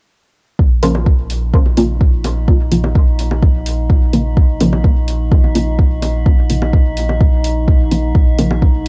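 Dub techno at 127 BPM in 4/4 with a straight feel, this hypnotic, cavernous excerpt sits on a single Bb minor chord, cut from a longer piece. A deep, overdriven electronic kick drum sits up front from 0.6 seconds, alongside a round, soft sub bass whose sustained triangle and square tones pump under sidechain compression. A muted, detuned chord stab spanning Db3 to F4 carries a filter sweep throughout, its short plucked decay smeared by phaser and dub echo. An eerie, inharmonic FM drone enters at 1.4 seconds with a slow attack, chorus and its own built-in reverb, pumping in the background. An overdriven electronic hi-hat and layered bongos with dub echo round out the groove, and the kick, hi-hat and bongos all carry the grainy character of a home cassette recording in a dry room.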